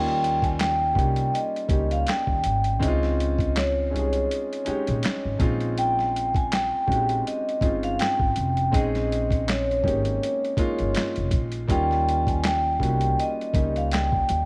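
A mellow vibraphone with soft mallets sings the melody from the start, its ringing metallic tone shaded by a slow motor vibrato and a slapback echo, over a warm, boxy grand piano and a woody, dark pizzicato upright bass. At 0.1 seconds a gritty, pitched-down boom bap sampler-style kit arrives up front with a thumpy kick, medium-tuned snare, hi-hat and handclaps, all tape-warm and compressed. This late-night, soulful neo-soul R&B excerpt sways at 81 BPM with a swung sixteenth feel, moving from Eb9 to Bbm11 and back in a small room.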